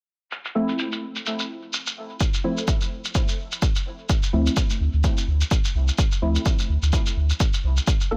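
Deep and cavernous, this short cut from a longer dub techno piece moves at 127 BPM in 4/4 with a gentle swing, set in D minor. A muffled, pitched-down shaker opens at 0.3 seconds, its compressed, tape-softened sampler tone filtered and placed in a small room. Soon after, a soft, dark chord stab arrives, blending detuned triangle, sawtooth and sine tones with ring modulation and a moving notch; its fast attack decays into chorus, phaser and dub echo, it pumps against the sidechain, and a filter sweep runs across it as the harmony shifts from Fmaj7 to Dm7. A punchy analog kick drum enters up front at 2.2 seconds, and from 4.3 seconds a clean, smooth sine sub bass settles in beneath it, sustained and pumping. Light reverb gives the mix its sense of space.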